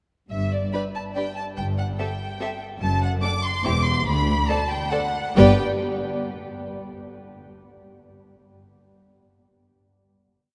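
Drenched in a vast, echoing cathedral reverb, this brief, spirited classical-period piece for string orchestra moves at a quick 142 BPM in 3/4 with a rubato feel, in G major tuned to A4 = 437 Hz. Up front, a lush, expressive first violin section sings the melody with vibrato from 0.3 seconds, supported by cellos bowing sustained bass notes on the beats and a smooth, even double bass section doubling that line, while focused second violins and violas join at 0.7 seconds with after-beat and sustained chords. The harmony passes through D/F#, C/E and D7 before settling on a final G chord at 5.4 seconds.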